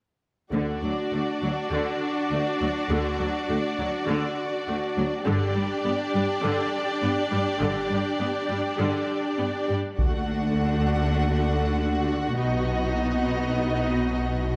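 A straight 4/4 pulse at 101 BPM carries this triumphant, majestic cinematic orchestral cue in D major, cut from a longer piece, where lush bowed strings move from D to G5 and back. Smooth violins hold a second line above clear, focused violas, while a rich cello section and soft-attacked double basses with expressive portamento anchor the bass. At 10.0 seconds a build-up begins toward a B chord, punctuated by a brief burst of heavy-stick taiko drums, compressed and saturated, all set in a moderate scoring-stage reverb.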